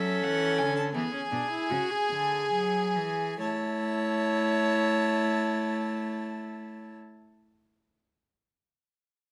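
The second violin sits up front in this elegant, lively passage from a longer baroque-style string quartet fugue in A major. It carries a second line between G#4 and C#5 with light vibrato, beneath the first violin's melody in the E5 to A5 range. The viola fills in the accompaniment, and a rich, close cello, also up front, anchors the bass from B2 to A3. All four players bow in period style with a reedy gut-string tone, and a light reverb surrounds them. In a straight 6/8 at roughly 43-59 dotted-quarter beats per minute, the opening slows down over a D to E7 progression before arriving on A at 3.4 seconds, and all four parts stop together at 7.0 seconds.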